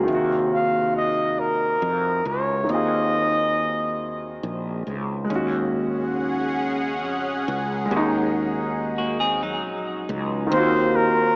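A warm concert grand piano opens this late-night, sultry R&B excerpt in Eb dorian, its intimate tone carrying audible action noise, deep bass and long sustain under a lush chorus. Beneath it, a fretless electric bass adds a growly, punchy edge through analog chorus, while a thick, detuned unison pad colors the first moment. The pace is slow, 46 dotted-quarter beats per minute in a straight 6/8, with the harmony resting on Ebm69, moving to Ab7sus4 and settling back on Ebm69. At 0.5 seconds a breathy flugelhorn takes the up-front, jazz-style melody, whispered and soft in attack with scooped notes, and the sawtooth pad later returns with chorus and phaser before a clean, twangy picked electric guitar adds a second line at 9.0 seconds, its subtle chorus trailing into diffuse ambient delay. The flugelhorn comes back at the close, and the whole mix feels dreamy, soaked in a long plate reverb with a small-speaker character.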